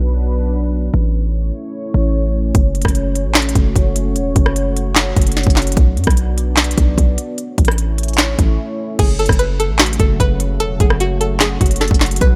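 Eerie and dark, this half-time trap excerpt opens on a deep, detuned analog pad with chorus and a punchy, heavy 808-style bass up front, moving through minor-leaning chords. The electronic trap kit enters at 2.5 seconds with a hard-clipped kick, sharp snare, crisp hats, handclaps, rim clicks and crash. After a short break at 8.6 seconds, a twangy, string-like resonator pluck arrives at 9.0 seconds with a filter sweep, chorus and digital delay, all in a dry, close mix.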